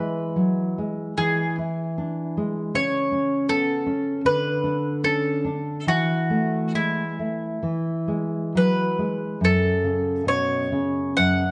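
Romantic duo music for mandolin and classical guitar unfolds in a lyrical, warm mood, moving at a rubato pace between 61 and 81 BPM in 4/4 and in A major, tuned slightly high to A4 = 441 Hz. The bowl-back mandolin carries the melody from start to finish, its picked double strings ringing brilliant and up front between E4 and F#5. Beneath it, the nylon-string guitar fingerpicks a full-bodied, dark accompaniment from F#2 to E4, with audible finger squeak adding a close, human touch. The harmony moves from E through A/C#, D5, A5/E and back to E before settling on F#m near 9.4 seconds. A generous recital hall reverb with a 1.7-second tail surrounds the pair, and the mellow, rounded production keeps the top end soft across this 11.5-second fragment of a longer piece.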